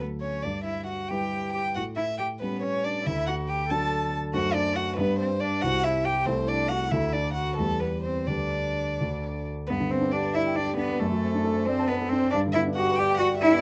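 Lilting in 6/8 with a flexible, rubato pulse, this quick classical-period movement for piano trio sounds spirited and graceful. The violin carries the melody up front with an airy, intimate bow, soft attacks, light vibrato and the veiled tone of playing over the fingerboard. Beneath it, the cello sings a pure, floating second line, rich in tone and also softly bowed over the fingerboard. The concert grand piano supplies a warm accompaniment with a deep bass, sitting up front alongside the violin. The harmony moves to a new tonal centre at 4.3 s, and a fresh section begins at 9.7 s before this excerpt from a longer piece ends at 13.6 s. Close, detailed miking and a light reverb keep the trio clear and present.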